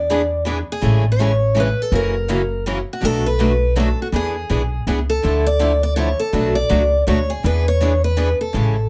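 A picked steel-string acoustic guitar carrying the melody and a dark, woody upright bass open together on an E7 chord, with two more picked steel-string acoustic guitars joining for accompaniment at 0.1 seconds. This is a charming, lively piece of jazz manouche string swing in 3/4 at 164 BPM, with a gently swung eighth-note feel, cut from a longer performance. The lead guitar sits up front with a bright, boxy parlour tone and the snap of fresh strings, while the bass, plucked on gut strings, gives a thumpy, prominent low end. Beneath them, one accompanying guitar has a similar small-bodied parlour character, and the other is a concert-sized instrument whose finger squeaks come through. From 0.8 seconds the harmony moves through Amaj7, F#7, Bm7, E6, Dmadd9 and Bm9 before returning to E7. A light reverb gives the quartet an intimate sense of space.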